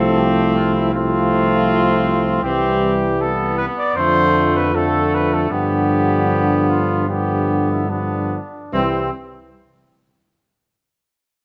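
A large studio's moderate reverb and a softened top end frame this triumphant, noble classical brass quintet in C major, moving with rubato at roughly 71-81 BPM in 4/4: a mellow, distant trumpet carries the melody over a bright second trumpet, a clear French horn with light vibrato and a vintage-toned euphonium sit in the background, and a dark, close-miked bass trombone with vibrato stands up front, all five playing from 0.0 to 9.1 s as the harmony settles onto C at 8.7 s in this short cut from a longer piece.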